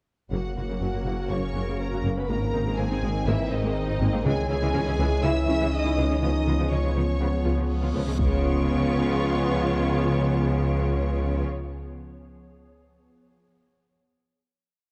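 A worn, warbling cassette-tape sheen with warbly pitch drift hangs over this short cinematic cue, a hybrid orchestral and electronic film score at 122 BPM in 4/4, set in a wet scoring-stage reverb and moving through F#, G#add9, C#m and C#7 with a futuristic, relentless mood. A bright, intense violin section carries the vibrato-laden melody, doubled an octave below by a rich second violin section and by a dark, soft-edged French horn section, while violas drive a rhythmic ostinato and sustained chords alongside a very quiet, glassy FM pad entering at 0.8 s and a very quiet trombone section. The low end stacks a focused cello ostinato, a very quiet double bass section, a distant tuba and a deep, clean sine sub-bass drone, until a huge reverse cymbal at 8.0 s builds into a low impact at 8.2 s that lands on the final chord.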